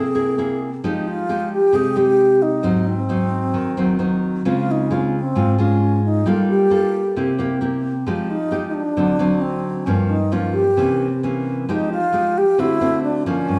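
An alto flute with an airy, straight tone and soft attack sings the melody up front from the start over full-bodied, fingerpicked nylon-string guitar in this intimate, wistful bossa nova fragment, the two played live together in a stone room whose reverb lingers around them as the guitar moves through lush minor-ninth and altered seventh chords.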